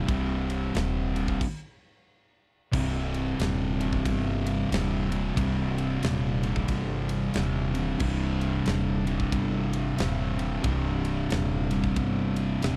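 Hypnotic and sludgy, this swung stoner and doom metal clip, cut from a longer piece, opens with riffs from an overdriven, double-tracked semi-hollow guitar and two thick fuzz guitars sitting in the background, before a stop from 1.4 to 2.7 seconds. An up-front pizzicato upright bass with woody steel strings and added overdrive holds the low end beneath them, while a big rock kit with a fat snare, punchy kick, crash and ride rings in a bright stone room. The sound is a dry, close 1970s-style studio recording with little reverb.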